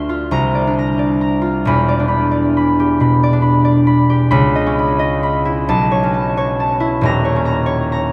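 A concert harp opens the recording alone, its fingerpicked strings ringing out from the front of a vast, echoing space. This is a short, gentle and wistful classical solo harp passage, cut from a longer piece and lasting 8.1 seconds. It moves at around 89 BPM in 4/4, though the playing is rubato and flexible, with the harp tuned slightly low to A4 = 439 Hz. The instrument's warm, acoustic tone spans a broad range from Eb1 up to C6. The harmony drifts through rich, colourful chords such as C9sus4, Em7, Dbm9 and B9sus4. A huge, wet reverb with a long 8.2-second tail surrounds the harp and lets every note bloom and linger.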